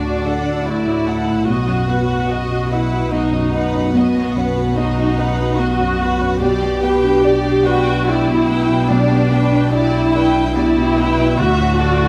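Heard in a moderate scoring-stage reverb, this short cut from a longer cinematic orchestral film score unfolds with a longing, moving mood at a rubato 73 BPM in 3/4. A soft, intimate felt-muted upright piano with audible action noise and an up-front, woody viola section with vibrato share the accompaniment. A floating violin section carries a second line above, a rich cello section sits in the background, and a dark double bass section anchors the low end. The four string sections are bowed sul tasto through chords of D, B, G/B and Dadd9.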